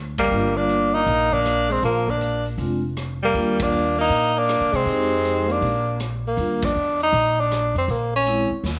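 A brisk swing at 158 BPM in 4/4, this short cut from a longer jazz piece moves with a playful, sophisticated small-group bop feel in Eb major, with band accents landing at 0.1, 3.5 and 6.6 seconds. An upright bass, played pizzicato with a woody, thumpy tone, anchors the bottom from the very start, while a distant, roomy drum kit with a boomy kick and medium-tuned snare works its hi-hat, ride, rim click and snare at a low level. Up front, a breathy, close-miked tenor saxophone carries the melody with light vibrato and a slapback echo, joined by a clear alto saxophone on a second line that uses subtone and scooped notes before dropping out at 6.0 seconds. A vibraphone with medium mallets adds metallic, ringing chords with a slow motor vibrato, moving through changes such as Gm7, Bb9 and Ebmaj9. The whole is set in a light studio reverb that gives the ensemble a polished, intimate sound.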